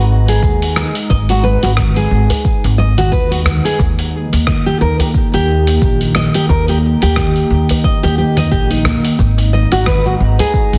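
Earthy and warm, this organic downtempo excerpt moves with a relaxed swing in four. A fingerpicked nylon-string guitar sits up front, playing classical-sounding arpeggios that carry a touch of delay. Beneath it, a woody, thumpy upright bass with gut strings plucks the low end, pumping gently against the beat, while a warbling, nostalgic pad of detuned sawtooth and triangle tones holds mellow, lo-fi chords with chorus, its own reverb and a soft pulse. From 0.3 seconds a gritty, sampler-style soul kit of congas, hi-hat, rim click and shaker joins, its snare softly clipped, alongside a tight, cracking djembe played with soft hands in the background. At 0.4 seconds a deep, tape-tinged electronic kick arrives, and the whole piece sits in light digital ambience under a dense, heavily limited modern master.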